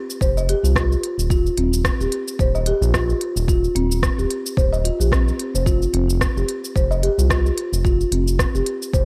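A folk marimba played with soft mallets opens this organic downtempo excerpt at 0.0 s, spinning woody, rustic arpeggios between C4 and Eb5 that sit up front, trailed by delay. A deep house drum kit follows almost at once with smooth hi-hat, rim click and shaker, and by 0.2 s an electronic kick and a round analog bass have joined. The bass is deep and evolving, with a fast attack and sustained, mellow notes between Eb1 and C2, pumping through sidechain, while the kick lands deep and tape-warm. The groove moves at 110 BPM in 4/4 with a light swing on the sixteenths, tuned slightly sharp to A4 = 443 Hz, and the harmony shifts from F5 to Eb at 1.3 s before returning to F5. A moderate plate reverb soaks the mix in a dreamy haze, leaving a hypnotic, earthy mood.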